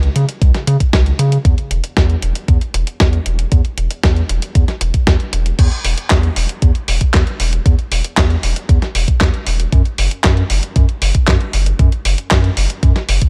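Danceable and bittersweet, this italo disco passage moves at a straight 116 BPM in 4/4 and is cut from a longer piece. A round analog bass sits up front from the start, its deep, dark tone carrying a sine-like smoothness with a fast attack and sustained notes that reach from E1 to C#3. A clean 12-bit drum machine supplies crash cymbal, handclaps, hi-hat and a fat snare with a sampler-style, forward character. A thumpy electronic kick drum joins at 0.4 s and is the loudest part, with both drum sources sitting in a small room ambience. The arrangement shifts into a new section at 5.6 s and runs to the end at about 13.3 s, all within a digital ambience.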